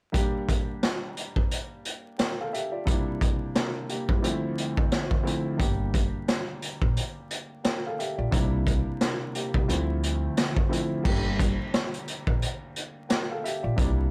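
Gritty and reflective, this swung boom-bap hip-hop excerpt opens on a dark, mellow grand piano with audible action noise, filtered through a cassette-tape haze, alongside a punchy, saturated garage drum kit of kick, medium-tuned snare, hi-hat and crash, its top rolled off. At 5.6 seconds a woody pizzicato upright bass with tube saturation joins under the minor-key chord cycle. The dry, intimate mix carries vinyl crackle and a raw hardware grit.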